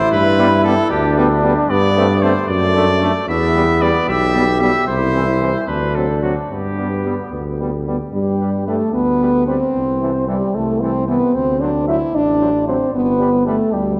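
Steeped in a wet church reverb with a dark, warm production, this triumphant classical brass quintet passage in 6/8 sets a mellow, distant trumpet melody over a flugelhorn second line with vibrato and a smooth top, while a clear French horn and a very quiet, brilliant trombone supply the accompaniment and an up-front bass trombone with light vibrato and a soft attack carries the bass, moving from its opening section into a new one at 8.1 seconds.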